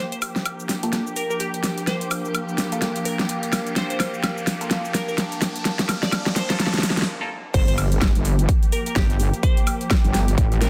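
A dense, heavily limited modern master with light reverb frames this gritty, aggressive bass house excerpt in G minor at 127 BPM, swung at 59% on the sixteenths and resting on a Gm7 chord. The opening build-up pairs a glassy wavetable pluck melody, treated with chorus and dub echo, with lush, bowed studio strings holding sustained chords under sidechain pumping and a low-pass filter, while a warbly, lo-fi pad adds nostalgic texture from 0.6 seconds. A nasal, band-passed chord stab with phaser and dub echo rides a filter sweep, and an overdriven big-room kit with a huge snare and metallic hats runs a drum fill as a riser and noise sweep enter in the background from 2.2 seconds. After a brief break, the drop lands at 7.5 seconds, where a heavy, saturated wobble bass and a punchy, overdriven electronic kick push up front over the pumping pad and strings.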